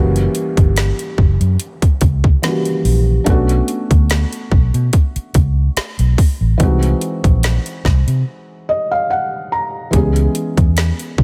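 A felt-muted upright piano with thick felt and audible action noise opens this moody, late-night contemporary R&B excerpt alongside a round, foam-muted vintage electric bass and a very quiet downlifter that ends at 3.3 seconds, while a trap drum kit with a hard-clipped kick, woody snare and metallic hats joins at 0.2 seconds, all close and dry over lightly swung harmony until a break at 8.3 seconds opens space for a soft piano fill.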